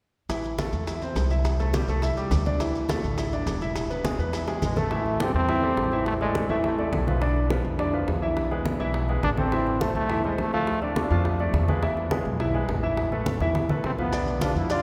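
Salsa at a fast, driving clip, this danceable excerpt unfolds in a cavernous church-like space whose long, wet reverb hangs over every hit. A clear, polished concert grand piano sits up front with short-sustained chords and deep low notes, while a woody, growly pizzicato upright bass thumps beside it through the whole passage. Congas with thin, low-tuned skins and tight, high-tuned bongos, both played with soft hands, ride in the background, and grainy, saturated maracas shake through the opening until 4.9 seconds before returning at the close. A punchy trombone with light vibrato and a smooth top takes the solo melody in short bursts, first entering at 4.6 seconds and coming back twice in the second section. Drum fills mark the turn into that section and the final moments, and the harmony moves through minor chords, suspended colours and diminished tension before the excerpt cuts off.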